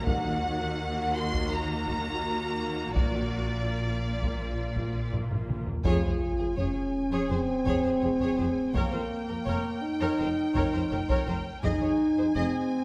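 Moving at a straight 83 BPM in 4/4, this brooding, futuristic hybrid orchestral and electronic film score cue, cut from a longer piece, opens with lush bowed strings (warm violins carrying the melody over clear violas and rich cellos and double basses) and distant, heavy-stick taiko in a reverberant scoring stage, before a drum fill leads at 5.9 seconds into a band accent and impact where a second violin line, a mellow, up-front French horn section in sustained chords and an electronic sub drop join, moving from Ebm and Bb toward Db/F and Ab/F.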